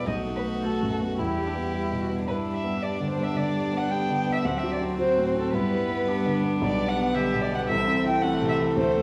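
Soaked in the reverb of a recital hall and dusted with vinyl crackle, this short cut from a longer quick classical-period movement for piano quintet moves at 110 BPM in 4/4 with a graceful, spirited rubato. Up front, a dark, woody violin with vibrato carries the melody between G4 and G5, while a mellow, vintage grand piano supplies the accompaniment alongside a pure, floating viola played sul tasto. A second violin with an airy, intimate sul tasto bow and a cello sitting in the background shape the second line over chords moving from B7 and Em through G and D7 to Am/C.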